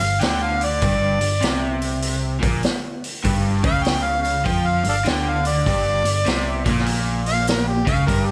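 Gritty and raunchy, this brief excerpt from a longer piece is blues rock and southern rock in the power trio mold, swinging at 99 BPM in 4/4 over a G5 chord. A warm, overdriven harmonica plays a jazz-style solo through plate reverb for the full 8.3 seconds, up front and full of vibrato, tongue slaps and scooped notes. Beneath it, a crunchy, double-tracked guitar riff sits alongside a growly, punchy overdriven picked bass and a raw garage drum kit with a boomy kick, saturated hi-hat and snare and a rolled-off top, all in light reverb.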